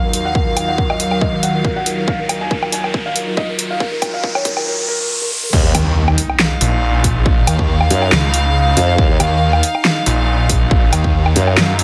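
Aggressive and menacing, this heavy wobble dubstep excerpt opens with a filter-swept build-up: a soft, muted upright piano with thick felt carries the melody through a digital delay, over an evolving wavetable pad with phaser and sidechain pumping, an earthy chamber string section, a rising electronic riser, and a dubstep drum kit with a huge snare and bright hats that plays a drum fill, while a punchy electronic kick drum sits up front. At 5.5 seconds the drop hits with an impact as the piano stops, and a formant-sweep wobble bass and a snarling, distorted saw bass take over, both compressed and up front. The strings, overdriven kit and kick drive on through the drop.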